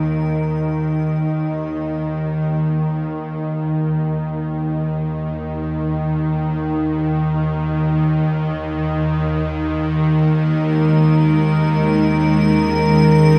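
A tense, nasal bowed-like drone opens this dark, desolate ambient fragment in free time, its bright, string-like sawtooth tone sitting up front with vibrato and its own reverb, while a high Eb5 sounds at 0.3 seconds. The drone holds alone through a wet echo-chamber space until a sweeping, resonant pad of detuned, warbling vintage chords with subtle chorus returns at 9.6 seconds. An icy, crystalline glass pad, airy and bright with chorus and reverb, rejoins at 10.1 seconds to shimmer quietly above.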